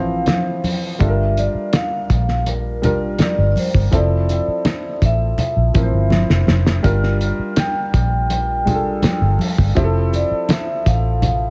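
This silky, cinematic slice of lush 1970s-style soul is bathed in studio reverb, with a lo-fi, muffled drum kit and a dark electric bass sitting up front. A vibraphone played with soft mallets carries the melody in a mellow, ringing voice, shimmering with slow motor vibrato and tape echo. Beneath it, a concert grand piano supplies intimate accompaniment, with audible action noise and deep bass. The foam-muted, round bass anchors the low end, while the cloth-damped kit brings a fat snare, tight kick and hi-hat with a gritty, saturated, rolled-off top, alongside soft-handed congas with a thick skin. After a drum fill at 6.1 seconds, a bell-like glockenspiel with rubber mallets glints softly in the background from 6.8 to 10.1 seconds, as the harmony moves between Fmaj7 and Gm7 in a straight 4/4 feel.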